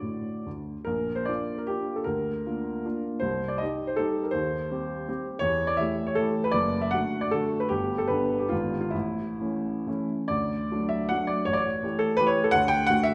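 A solo baby grand piano opens on a D chord before settling into B-flat major, launching a romantic classical dance in triple time with dotted rhythms. The mood is proud and rustic, and the tempo moves freely between 123 and 175 BPM, with rubato shaping each phrase. At 5.4 s the music turns to D major, passing through a diminished chord on its way to an A chord, and from 10.3 s a new strain alternates D and A7 harmonies to close on D. The piano has a warm, open tone with long sustain, sitting up front and ranging from the low bass up to G5. A wet recital hall reverb surrounds the instrument in this brief passage cut from a longer piece.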